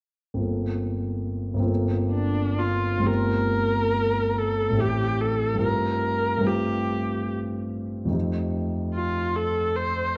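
A dark, warm recording with a moderate scoring-stage reverb frames this hazy, mysterious impressionist duo in 3/4, cut from a longer piece. A vintage-sounding grand piano opens at 0.3 s with intimate, smooth chords carrying deep bass, long sustain and audible action noise, moving through Gm11, Am7 and F9. A single bowed viola enters at 2.1 s with an expressive, distant-toned melody full of vibrato and portamento, and both parts sit up front while the beats stretch freely with rubato.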